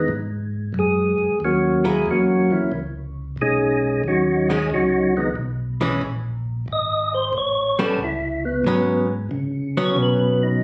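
A percussive tonewheel organ with third-harmonic percussion and a slow rotary speaker carries the melody from the first moment of this late-night, smoky soul jazz organ trio fragment in G# minor at 91 BPM with a swung 4/4 feel, backed by a clean, compressed hollow-body archtop guitar and a dark, round organ bass with key click and vibrato turning through its own rotary speaker, all three parts up front in a phone recording of the room with light reverb.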